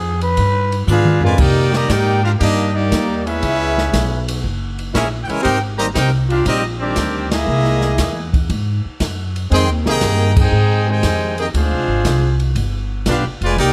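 Light reverb frames this dramatic, brassy big band swing excerpt, cut from a longer piece. A dark, raspy growling trumpet opens the solo over the upright bass, its gritty, breathy tone sounding distant and roomy yet up front, and the drum kit enters almost at once, later playing a fill that carries the band in. At 0.9 seconds the brilliant trumpet section takes the melody with light vibrato, backed by a warm trombone section on a second line, while a natural grand piano touches in briefly in the background. The pizzicato upright bass is woody and up front on steel strings, and the airy, polished kit sounds like a small room, pairing dark cymbals with a medium-tuned snare and boomy kick. Rich jazz chords move under the horns, and the full band hits accents at 7.2 and 10.3 seconds before the cut-off.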